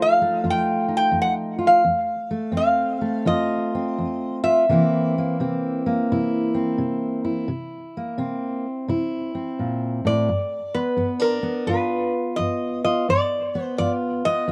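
Rollicking and swaggering, this acoustic country blues moves at 86 BPM in 4/4 with a swung eighth-note lilt, and is a short cut from a longer piece. A metal-body resonator slide guitar carries the melody up front, its metallic, nasal tone picked with fingerpicks and trailed by a slapback echo, sitting between Bb4 and G5. It states a phrase from the start to 5.1 seconds, falls away, and returns at 10.1 seconds to close out the passage. Beneath it, a fingerpicked steel-string dreadnought plays the whole way through, dark and full-bodied, spanning F2 to F4 and also placed up front. The harmony moves from F7 to C7 at 4.7 seconds and on to G7, all heard with light reverb in an open outdoor setting.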